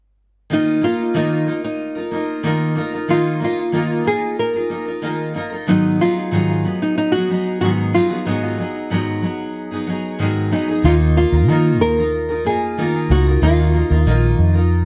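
In a straight 4/4 feel, this tender, wistful acoustic pop passage, cut from a longer piece, sets a woody, fingerpicked nylon-string guitar melody with an aged, old-strings character, bathed in plate reverb and tape echo, over a double-tracked, full-bodied steel-string acoustic accompaniment from a jumbo guitar, picked up front with audible finger squeak. At 10.8 seconds a round, punchy, foam-muted vintage electric bass joins, dark and amped, as the harmony returns from Abm7 to Ebsus2. A moderate studio reverb surrounds the recording, with a faint mains hum underneath.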